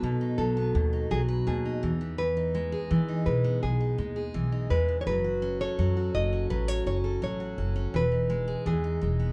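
A fingerpicked nylon-string guitar carries the melody in this easy-going, sunny pop fragment, its classical tone shaded dark, with finger squeak audible in its playing. Beneath it, a picked jumbo steel-string acoustic guitar supplies full-bodied accompaniment on fresh strings, sitting up front in the mix. A pizzicato upright bass on steel strings anchors the low end with a woody, thumpy sound that also sits prominently forward. All three play throughout the 9.3-second clip, moving in a straight 4/4 feel from B to Emaj7 at 1.8 seconds, then F#m, and back to Emaj7. The trio sounds like a band playing live together in one room, wrapped in light reverb, and the passage is cut from a longer piece.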